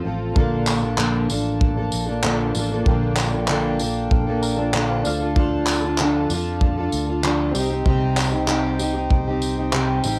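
A double-tracked, full-bodied fingerpicked steel-string acoustic guitar with fresh strings accompanies up front, its tone carrying cassette-tape character, in this carefree, heartfelt acoustic pop piece at 96 BPM in Bb major, joined by a dark, round, punchy electric bass, a bright, barky, lightly overdriven electric piano sitting very quietly, a breathing, mellow pedal harmonium holding airy, tape-coloured chords in the background, and a small-room drum kit on cassette with a tight kick, handclaps and tambourine, all moving through Bbmaj7, Dm and Cm in a dry home-recorded sound.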